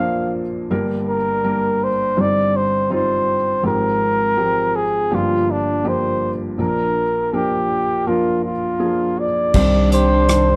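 A breathy, whispered flugelhorn with vibrato carries the melody of this reflective, heartbroken acoustic folk-pop ballad from the start, sitting up front beside a soft, felt-muted upright piano in a dark production touched by light reverb. At 9.5 seconds a new section begins: a woody pizzicato upright bass and an unplugged drum kit played with bundle sticks, with a punchy kick, crash, hi-hat and rim click, enter together, while a mellow French horn adds a second line in the background. From 9.9 seconds a clean, picked semi-hollow electric guitar joins with tremolo arpeggios further back in the mix.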